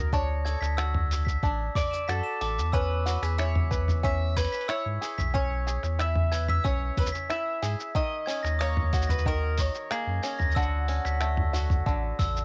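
A home cassette recording with light reverb frames this pastoral folktronica fragment at 92 BPM in 4/4, moving through Dmaj7, E6, D#m7 and back to Dmaj7. A bright bowl-back mandolin carries the melody through cassette tape and analog delay, while a twangy, fingerpicked bluegrass banjo plays arpeggios through its own delay, both over a round, sine-like sub bass that sits up front. A soft electronic kick and a muffled, pitched-down sampler kit of finger snaps, hi-hat, shaker and toms keep a straight feel, and a bell-like glockenspiel struck with brass mallets rings through tape echo from 0.4 seconds.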